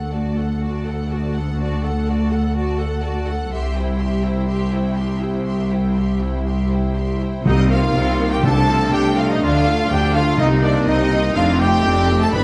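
An up-front, even double bass section anchors this swashbuckling, determined stretch of heroic adventure film score, which moves in a straight 4/4 at 123 BPM. A close, focused cello section shares the bass line, a viola section with a smooth top fills in the accompaniment, and two bowed violin sections carry the upper parts: a lush, vibrato-rich melody in the background and a clear, intense, distant second line. The opening rests on D and then C harmonies before the music settles into C dorian at 7.5 s, moving through chords such as Cm7, F6/C and Dm. At 7.4 s a dark, soft-attacked French horn section enters with sustained chords in the background, joined by roomy trumpet stabs and by timpani struck with medium mallets on calf heads, which sound close and dry. The orchestra sits in a wet recital-hall reverb, and the passage is cut from a longer piece.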